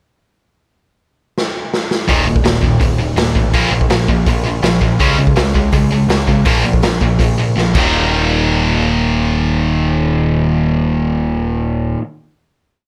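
A gritty, saturated raw garage drum kit with a punchy kick and medium-tuned snare drives this rowdy, rebellious punk rock piece at 164 BPM, kicking off with a fill at 1.4 seconds before two overdriven guitars chug palm-muted eighth notes and a growling picked bass pounds out driving eighth notes through Eb5, Bb5 and Db5 power chords, with light reverb, until the drums drop out at 7.8 seconds and the strings ring on through a final hit to 12.0 seconds.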